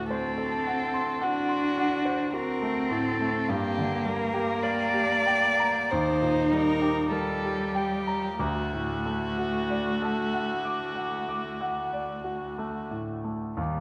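Bathed in a wet scoring-stage reverb, this solemn, yearning excerpt from a slow romantic piano-trio movement unfolds in rubato 4/4 at 44-54 BPM, with a close, intimate solo violin carrying the melody in light vibrato and airy, soft-attacked sul tasto bowing until 12.9 s, over a dark, smooth-topped cello second line and an open, clear concert grand with deep bass accompanying through D7, Gm, Eb and D.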